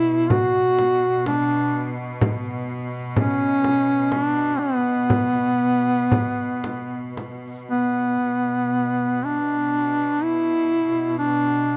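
A warm, vibrato-laden duduk sings a mournful, solemn Caucasian folk lament up front, its punchy scooped notes floating in a rubato triple metre over a rich, earthy bowed drone from a chamber string section, while a small, bright frame drum played with soft hands joins from 0.3 to 7.4 seconds in this short cut with light reverb and close, detailed sound.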